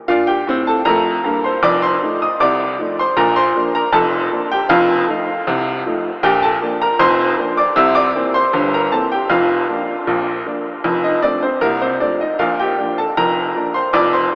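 Heard through an AM-radio sound and a huge, wet reverb that places it in a vast, echoing space, this is a short slice of jaunty, cheerful ragtime piano in Bb major at 78 BPM in a straight 2/4. A solo upright piano, clear and woody with a short sustain, sits up front and ranges from F1 to E6. It moves mainly between Bb and F7, touching C7 around 7.8 seconds before settling back on Bb at 12.4 seconds.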